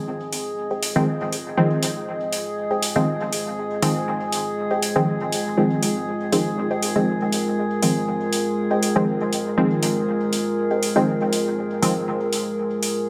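Muted, deep dub chord stabs sit up front from 1.0 seconds, washed in chorus, phaser and dub echo, over a single Fm7 harmony in this meditative, hazy dub techno excerpt at 120 BPM with a light 16th-note swing. A dark analog pad with a moving notch holds sustained chords alongside a calm, glassy texture of drifting overtones, while overdriven metallic electronic hi-hats ride up front. A warbling, lo-fi pluck with a filter sweep and dub echo sits in the background from 0.7 to 11.1 seconds, all set in a lush hall reverb.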